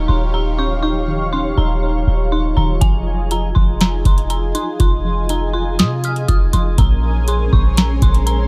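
A booming analog drum machine with a deep kick, tonal snare and metallic hats arrives up front at 2.8 s in this hazy, melancholic half-time cloud-rap excerpt, joining a clean, boomy 808-style bass, an eerie, inharmonic detuned synth bell melody with chorus and delay, smooth sawtooth pad chords pumping under sidechain, soft round pluck arpeggios tucked in the background, and a twinkling granular texture with octave-up shimmer, all in a dry mix.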